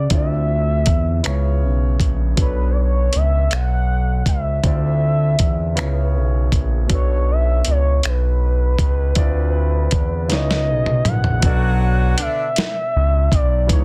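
A gliding synth lead with portamento, vibrato, chorus and tape echo carries the yearning, late-night melody of this slow six-eight R&B passage, cut from a longer piece. A polished grand piano comps through a Dm9, C#m7 and Bm9 cycle over a saturated, up-front synth bass with a moving notch, while a gritty, tape-warm sampler-style kit adds finger snaps, a thumpy kick and a soft-clipped snare, rolling into a fill at 10.3 seconds. Clear horn stabs in octave doubling enter at 11.4 seconds and stop at 12.5 seconds, all inside a dry, dense, heavily limited mix.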